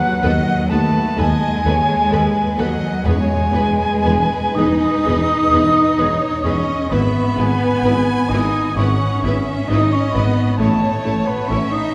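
Classical slow romantic orchestral movement in E major at 64 BPM in 4/4, tender and unhurried with a rubato feel, this excerpt moves from B7/D# through E and E/G# to A beneath a very quiet, expressive violin melody with gentle portamento and vibrato. Around it, an airy, hollow flute, a mellow cor anglais and a close, rich chamber violin section weave second lines, while a distant viola section gives even accompaniment and a tight French horn section holds mellow sustained chords in the background. A focused, lush cello section, a smooth double bass section and a soft-edged tuba anchor the bass, timpani with medium mallets sound briefly from 3.0 to 4.5 seconds, and a church reverb with a long 3.4-second tail bathes the whole ensemble.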